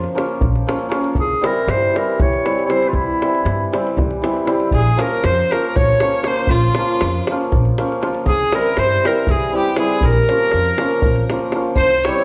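Balkan wedding-band folk in a restless, bittersweet 7/8 at 237 BPM counted in eighths, speeding up throughout, in Bb Dorian sharp four, where a distant, roomy, classical-style clarinet carries the melody up front over shimmering, ringing hammered dulcimer, woody, dark pizzicato upright bass and tight, close davul, with a rich, smooth, vibrato-laden bowed violin joining on a second line at 4.7 s, all set in a moderate recital-hall reverb with the highest frequencies rolled off.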